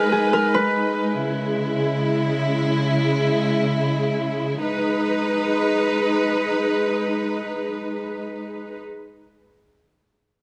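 A Celtic harp leads the opening of this short, eerie hip hop fragment in free time, its thumb-plucked, ringing acoustic tone sitting up front and trailed by a digital delay as it plays a brief melody between G#4 and B4 before stopping at 2.6 seconds. Beneath it, a studio string section holds sustained bowed chords from C#3 to B4, played sul tasto with vibrato and a soft attack that gives the ensemble an intimate, close presence. The strings carry on by themselves after the harp stops, lasting until 8.8 seconds. The harmony in G# minor moves from G#m to C#m at 1.2 seconds and returns to G#m at 4.6 seconds, where a new section begins. A lush hall reverb surrounds the parts, while heavy compression lends the whole a melancholic, radio-like flatness. It is cut from a longer piece.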